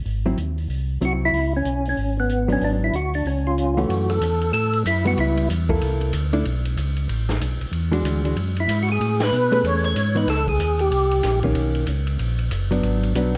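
Soul jazz organ trio in a smoky, late-night mood, swinging at 188 BPM in C# minor before moving to F# minor at 3.9 s, with a mellow, round tonewheel organ carrying the bass line through light overdrive, chorus vibrato and a slow rotary speaker, while a vintage acoustic drum kit with dark cymbals and a punchy kick keeps time on hi-hat, ride, snare and kick. A dark, clean hollow-body jazz guitar comps with compressed, fingered chords, and a fat, percussive tonewheel organ with key click and third harmonic percussion takes the melody up front from 1.1 to 5.5 s and again from 8.6 to 11.4 s, through rich chords such as F#m7, C13, E9 and Amaj9. The band hits an accent together at 9.2 s, all set in a moderate large-studio reverb, in this section cut from a longer piece.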